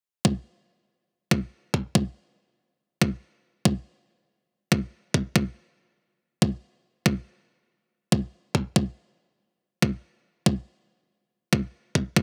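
A dry fragment of aggressive, menacing half-time dubstep, carried from 0.2 to 12.2 seconds by a lone electronic kick drum that is layered, knocking and tape-warm, sits up front, and is thinned by a high-pass filter.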